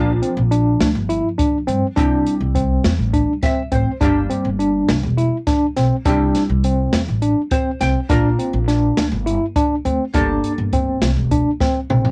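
Moving in a straight 7/8 at 206 BPM counted in eighths, this intricate, tense progressive instrumental excerpt in G dorian sets up-front arpeggios from a barky, gritty overdriven tine electric piano with fast tremolo over woody pizzicato upright bass, a smooth small-room jazz kit with a boomy kick and rolled-off top, and a dark, clean, double-tracked archtop guitar accompaniment that breaks into fills at 3.1 and 7.2 seconds before a drum fill at 11.6 seconds, all in light reverb with the character of a home cassette recording.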